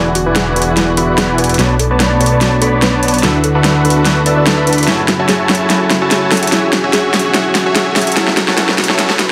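A huge-snared, metallic-hatted dubstep drum kit drives this lush, bittersweet future bass build-up at 146 BPM in a swung half-time feel, entering a moment after an up-front, compressed supersaw riff under a filter sweep, a thick detuned saw bass, a worn, slightly out-of-tune tine electric piano with lush chorus, a soft round pluck arpeggio with its own filter sweep and cassette-tape color, and a dark, very quiet string section holding sustained chords through progressions such as E9 and F#m9. A barely audible riser enters at 7.1 seconds, all set in a reverberant digital room.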